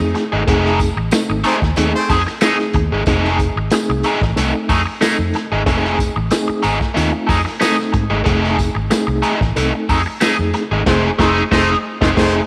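A straight 4/4 funk groove struts at 92 BPM in F mixolydian over an F7#9 chord, built on a crunchy breakbeat drum kit with a tight kick and dark cymbals and a round, foam-muted fingered electric bass. A reedy, slightly out-of-tune electric piano plays stabs through fast tremolo and slapback echo, an up-front overdriven guitar with wah fills in the accompaniment, and a jingly tambourine sits in the background from 0.8 seconds. A loose horn section with light vibrato and octave doubling enters at 1.5 seconds, during the band accents, and returns at 10.9 seconds, and the whole short cut is bathed in echo chamber reverb.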